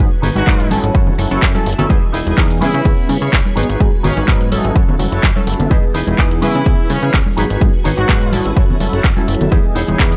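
A swung 126 BPM groove drives this sunny, funky filtered disco house clip, with a punchy, up-front electronic kick arriving at 0.5 seconds under a tape-warm house kit of handclaps and hi-hats, soft-handed tube shaker and congas, a plucky ring-modulated analog bass, a detuned sawtooth polysynth comp with chorus and phaser, a twangy envelope-filtered electric guitar riff with tremolo, a swirling phased string machine carrying gritty sustained chords, and a loose, roomy horn section with tape echo playing the melody from 0.4 to 8.5 seconds, the other parts all pumping to the kick over a G#m7–F#m7–Emaj7–C#m7 cycle in a dry, hardware-grit recording.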